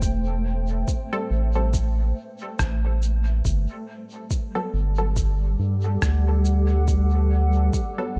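A round, dark analog bass sits up front in this spacious, meditative ambient dub excerpt at 70 BPM with a swung 16th feel, moving from Am7 to Gmaj9 at 3.4 seconds beneath a blurred, evolving granular cloud pad steeped in its own reverb. A soft, overdriven electronic kick and a muffled, pitched-down cabasa and rim click trailing dub echo keep time, while a muted, detuned filtered chord stab enters at 1.1 seconds with chorus and echo of its own. The digital ambience leaves the whole excerpt sounding echo-drenched.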